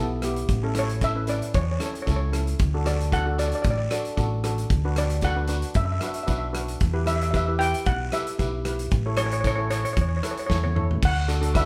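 A lightly swung 114 BPM calypso groove in D major carries this festive, carefree clip, where a bright, airy lead steel pan carries the melody over a shimmering second pan of double seconds, both played with hard rubber sticks, while a round, dark fingered electric bass sits up front, a loose indie drum kit with a pumping small-room sound and punchy kick enters at 0.2 s and plays a fill at 10.5 s, and a raspy guiro joins from 0.5 s in the background, the whole band playing live together in a large studio with moderate reverb.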